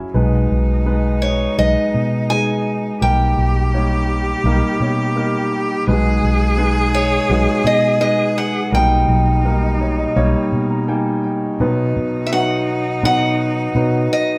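A picked acoustic archtop guitar carries the melody from 1.2 seconds, boxy and up front with audible finger squeak, in this tender, heartfelt folk-pop ballad excerpt at 84 BPM in 4/4. An intimate, woody upright piano with long sustain and audible action noise provides accompaniment, while a biting, intense cello adds a bowed second line with light vibrato, and a dark, round, foam-muted electric bass anchors the low end. Moderate studio reverb places the ensemble further back in the room, and the harmony moves between G#m/B and D#/B before settling on B at 11.6 seconds.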